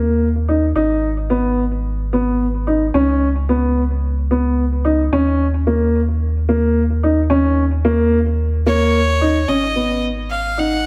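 Set in a lush hall reverb with a touch of small-room ambience, this short fragment of cinematic, moving piano-and-strings electronica sits in a straight 4/4. A dark, woody upright piano with delay plays a mellow riff up front, over a deep, round sine sub bass given tube saturation. At 8.7 s a single close violin enters with a clear, biting, airy bowed tone for a brief, nasal, earthy melody.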